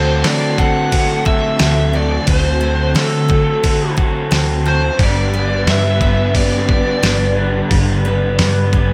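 A cranked small-amp lead guitar carries an overdriven, slapback-echoed melody through this hazy, wistful 88 BPM shoegaze and dream pop excerpt in D mixolydian, set over a shimmering, octave-doubled twelve-string acoustic guitar playing chorused arpeggios in the background, a reverse-reverb electric guitar riff, a lo-fi garage guitar riff with analog chorus, a round, punchy hollow-body short-scale bass, and an up-front, detuned 8-bit drum machine with a thumpy kick that enters at 0.2 s, as the harmony shifts from D7 to G at 5.0 s under light digital ambience.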